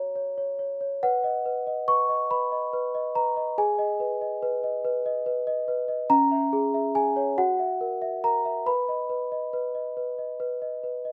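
A gentle six-eight lilt, counted in slow dotted-quarter beats with a straight feel, rocks this classical lullaby from its first moment. A lone celesta carries the whole piece from 0.0 to 11.1 seconds, its bell-like tone sounding delicate and sweet as the medium felt hammers strike across a range from C#4 to C#6. The harmony moves from F# to B, then through G#m and C#m to an F#7 that settles back on B, lending the passage a dreamy, innocent calm. A slapback echo trails each note of the celesta, while the close-miked instrument stays dry, full and up front. Recorded outdoors with little reverb and hardly any sense of a room, this short excerpt is cut from a longer piece.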